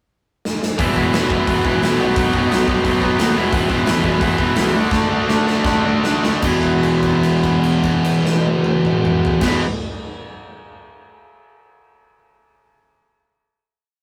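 Driving straight eighth notes in 4/4 at 148-176 BPM power this short, energetic, upbeat punk rock piece in E major, where a big rock drum kit with a punchy kick and bright cymbals opens with a fill at 0.5 s before an up-front overdriven semi-hollow guitar and a tight distorted guitar hammer out power and barre chords through E, B, E and D, a growly fuzz bass churns in the background, and the band slows from 3.5 s into a final E chord held from 6.4 s, all captured in a rough rehearsal-room sound with light reverb.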